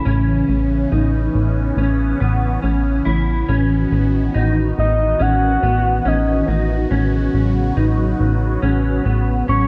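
In a straight, unhurried 4/4, this dreamy, ethereal dream pop fragment rests on a punchy, plucky analog bass and clean, fingered electric guitar arpeggios, both up front, beneath a swirling, detuned phased pad of sustained chords, while a round, octave-layered synth lead with vibrato carries the melody from 4.8 seconds, the harmony moving from A to B9 over A in a dark, warm production with light reverb.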